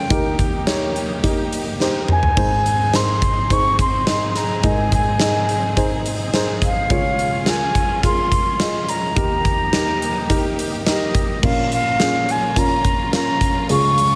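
An airy, mellow, distant concert flute carries the melody from the opening moment, set over a dark, woody upright piano with a short, vintage sustain and a lush bowed string section sitting far back in the mix. This is hopeful, anthemic piano-driven pop in Ab major, moving at a steady 106 BPM in a straight 4/4. A huge arena drum kit arrives almost at once, up front with a boomy kick, bright cymbals, a medium-tuned snare and toms, all ringing in a pumping hall sound. A drum fill between 1.8 and 2.4 seconds leads the harmony onto Ab, and the chords move on to Db and Eb before turning to Bbm as a new section begins at 11.4 seconds. Light reverb gives the whole mix a gentle sense of space, and the strings' vibrato adds a soft shimmer beneath the flute's straight tone. This passage is cut from a longer piece.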